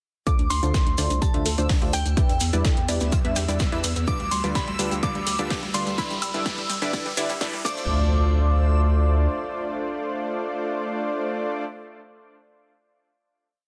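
Opening at 0.3 seconds, this expansive, driving progressive house build carries a crystalline FM synth bell melody, doubled very quietly by a glassy wavetable pluck, over a second pluck's bright sixteenth-note arpeggios, punchy detuned supersaw stabs in dotted-rhythm chords, a thick saturated sub bass rolling in sixteenths, an up-front four-on-the-floor electronic kick, a pop drum kit with a fat snare and metallic hats, a gritty, very quiet looped breakbeat and grainy hand-played maracas, joined at 1.5 seconds by a reversed, dreamy backwards swelling texture holding a high note, while filter sweeps run across the arpeggio and supersaw and a riser-and-impact effect carries into the final hit at 7.9 seconds, after which the drums have dropped away and the melodic lines and stabs ring on to 11.6 seconds.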